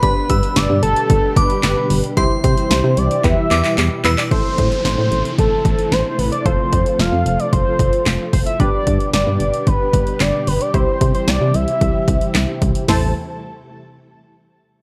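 A punchy analog drum machine drives this straight 4/4 synth-pop passage at 112 BPM, with kick, snare, handclaps, hi-hat and toms sitting up front, a tape-warm character and a short room on the snare, clap and hats, and a drum fill from 3.2 to 4.3 seconds. Beneath it, a solid FM bass gives round, dark, decaying notes with a fast attack, while a funky polysynth comp adds detuned, filter-plucked chords with chorus in the background and a soft string machine holds silky, vintage sustained chords under its ensemble chorus. In A minor with a driving, cool mood, the octave-doubled lead carries the melody from A4 to A5, a bold, retro sawtooth-and-triangle tone with vibrato, chorus and delay. A glassy, crystalline FM bell plays a second line only until 4.1 seconds, and an electronic downlifter sweeps through from 4.3 to 8.6 seconds. The chords move G, C and Em before settling into Am, F, G and C, in a dry mix cut from a longer piece.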